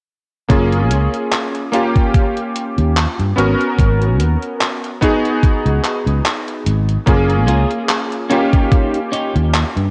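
A woozy, faded vaporwave excerpt at 73 BPM in F# major opens with a bright, clangy electric grand piano carrying a chorused accompaniment, a growly fretless bass with analog chorus, an overdriven, thumpy electronic kick, and gated 80s drum-machine handclaps and hi-hat with gritty 12-bit sampler texture. The harmony drifts through F#maj9, D#7, G#m11 and C#9sus4 on a lightly swung 16th-note feel, all bathed in light reverb and a worn, warbling cassette-tape pitch drift. At 7.5 seconds a clean, compressed twelve-string electric guitar adds a short riff with tape echo, and the kick drops out at 8.9 seconds.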